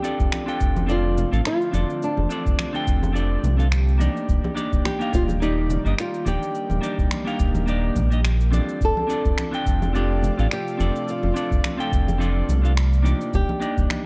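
Sunset chillout with a blissful, easy swing, this short cut from a longer piece sets a dark, fingerpicked flamenco guitar melody with tape echo against a bright, twangy clean electric guitar whose picked accompaniment carries delay, while an airy, breathy pad with chorus hangs softly in the background. Overdriven, layered electronic cabasa and finger snaps run from the very start. A round, up-front analog bass and a dry, deep electronic kick anchor the groove from 0.2 seconds, joined by ringing congas and bongos set back in a small room. The harmony rocks gently between F6 and Ebmaj7 under light reverb in a dark, warm production.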